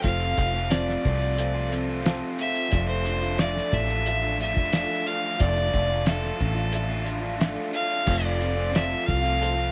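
Dusty and wistful, this short cut from a longer folk rock and heartland rock piece moves at 90 BPM in a straight 4/4, set in D minor. A bright, biting fiddle carries the melody up front, bowed by a single player with light vibrato and an earthy edge. Beneath it, a fingered electric bass sits forward with a foam-muted, amped tone, while a cloth-damped, thuddy drum kit, with a fat snare, tight kick and dark cymbals, keeps time alongside a grainy egg shaker tucked in the background. A crunchy, double-tracked overdriven guitar plays a riff, and a shimmering, octave-doubled twelve-string acoustic guitar picks out accompaniment behind it. Very quiet in the blend are a mellow concert grand piano with deep bass and a clean tonewheel organ holding sustained chords through a slow rotary speaker. The harmony rests on F, shifts to Dmadd9/F at 2.7 seconds and returns to F at 8.1 seconds, all within light reverb and a small room ambience.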